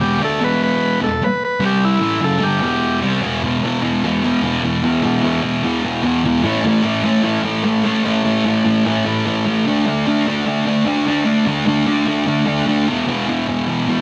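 Gritty, menacing rock in straight 4/4, cut from a longer piece, with a thick, double-tracked fuzz guitar riff sitting up front and running the full 14.0 s through power chords on E, A and D. A vintage, buzzy, overdriven combo organ plays an up-front melody alongside it only for the opening 3.0 s before dropping out. The band sounds as if it is playing live in one room, with a wet stone-room reverb around the sound.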